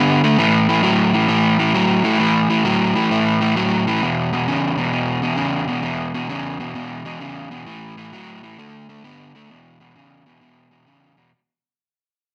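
An overdriven semi-hollow electric guitar plays alone from the start, its picked tone warm and up front with a slapback echo, working through power chords on A, E and D in a rollicking, swaggering blues at 132 BPM. The 4/4 groove swings its eighth notes, and the guitar stays in a low register in A major, set in a moderate studio reverb. This short cut from a longer piece fades out across its full 11.3 seconds.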